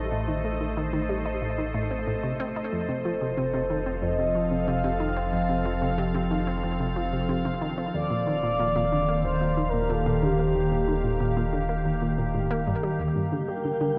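Cosmic and expansive, this excerpt of sequencer-driven ambient space music sets a morphing, warbling wavetable pad holding sustained chords over a nasal, wave-folded analog pluck riff steeped in tape echo and a deep, round bass that fades in, with a smooth, expressive synth lead carrying the melody from 2.7 s and an airy, wind-like tuned noise texture appearing in the background at 13.4 s, inside a dark, cavernous reverb.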